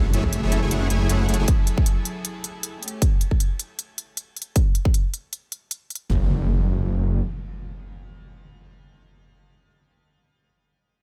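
An emotional, lush future bass excerpt cut from a longer piece, running at 156 BPM in 4/4 with a half-time feel and a light swing on the sixteenths, sits in a digital ambience. It opens with several parts at once over an F#m9 chord: a huge, compressed supersaw riff with tape echo, a thick, detuned, saturated saw bass with chorus, and an electronic impact, all pumping against the sidechain except the impact. Crisp, tape-warm hi-hats enter at 0.1 seconds and a punchy, up-front electronic kick follows at 0.2 seconds. Beneath them, a reedy chamber string section with gut-string tone and light vibrato holds sustained chords in the background, a fingerpicked Celtic harp rings barely audible, and a clear, intimate grand piano with audible action noise adds very quiet accompaniment. The harmony moves to A7 at 2.8 seconds before the chords drop away at 4.6 seconds, and the kick and hi-hats carry on alone with studio reverb. 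At 6.1 seconds a new section begins as the bass and impact return.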